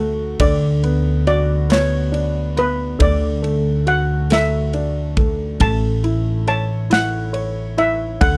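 Tender and heartfelt, this short six-eight pop ballad excerpt in A major drifts at 46 BPM as a shimmering, metallic double-seconds steel pan, struck with hard rubber sticks in a boxy small room, carries the melody over a clear, short-sustained upright piano, a thumpy, dark, woody pizzicato upright bass on gut strings placed up front, and a polished, airy acoustic drum kit that joins at 0.4 seconds with a punchy kick, a medium-tuned snare and ride cymbal, all captured as a dry, close 1970s-style studio recording moving from Bm/D through Dadd9 to A.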